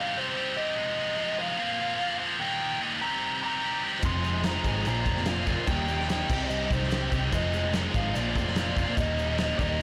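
A dark, smooth overdriven lead guitar with slapback echo carries the melody over a scooped, up-front high-gain guitar riff from the start of this wistful yet upbeat indie rock cut at 146 BPM in Eb major; at 4.0 seconds a crunchy chorused guitar, a round hollow-body picked bass, a loose drum kit with a punchy kick, fat snare and crash cymbals in a pumping room, a distant, grainy egg shaker and a soft, flute-like tonewheel organ on slow rotary speaker join in, the whole recording blown-out and overdriven with light reverb.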